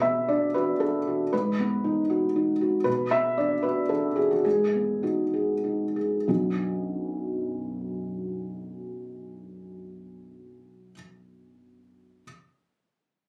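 A felt-muted upright piano plays alone, dark and close with thick felt and audible action noise, in this wistful, intimate neoclassical minimalist fragment in a rubato three-beat lilt, rocking between Bm and G#m7 while slowing from 2.1 to 6.3 seconds before a new passage begins, all heard through a phone in the room with a moderate, club-like reverb.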